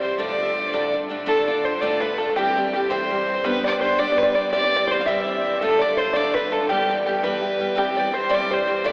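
A clear, earthy fiddle and a boxy, shimmering twelve-string acoustic guitar open this short excerpt of a Celtic jig together, both placed up front. The single bowed fiddle carries the melody with a light vibrato, while the picked guitar's octave-doubled strings supply the accompaniment beneath it. At 1.3 seconds a fingerpicked open-back banjo joins in the background with a twangy, plunky, percussive second line. The harmony moves through Dm, C, G and Em in 6/8, giving the tune a spirited, dark and lively character. A long, wet cathedral reverb surrounds the music as if it were played in a church or concert hall, yet the whole recording sounds as though it is coming through an AM radio.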